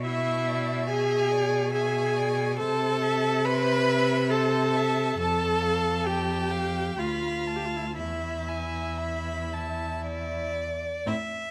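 Closely miked and finely detailed with a light touch of reverb, this slow, elegiac classical movement for string quartet drifts in a rubato 3/4 at 55 to 71 BPM, and the excerpt is cut from a longer piece. A rich, focused violin with vibrato carries the melancholic melody, a clear, close second violin plays a second line, and an up-front viola fills in the accompaniment. Beneath them all, a smooth, even cello anchors the bass as the harmony moves through E7/B, Am/C, F and Bm7b5/D before settling on E5 at 8.0 seconds, with the melody violin continuing to 11.5 seconds.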